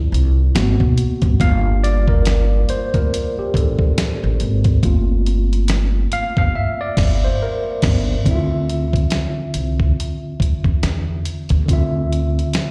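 A worn, slightly out-of-tune tine electric piano leads this sultry, soulful neo-soul and R&B piece at 70 BPM with a swung 16th feel in G dorian. Its lightly overdriven tone, heard through built-in speakers and touched by slapback echo, carries a solo through the first 8.3 seconds over chords moving from Dm9 through Abm9 to Gm9 and Gm11. Up front sit a woody pizzicato upright bass on steel strings and a gritty, compressed sampler-style soul kit with a thumpy kick, medium-tuned snare, hi-hat and crash, its tape-warm sound re-recorded in a large room; the band hits an accent from 6.5 seconds before a new section returns to Dm9 at 8.3 seconds, and the whole cut sounds like a live gig heard through the venue's PA, bathed in recital hall reverb.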